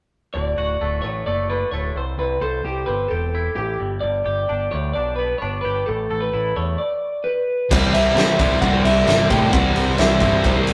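A twangy, slightly broken-up electric guitar through a small old amp carries the melody up front with spring reverb, over bright, clean, compressed twelve-string arpeggios and a growling, overdriven picked bass, in this restless, cathartic quiet-loud alternative rock fragment. At 7.7 seconds an oversized, low-tuned drum kit with a boomy kick, fat snare and dark cymbals bursts in, joined by a distorted high-gain guitar, a dark overdriven semi-hollow guitar in the background and a very quiet, double-tracked sludgy guitar, which all play riffs in a rough rehearsal-room sound.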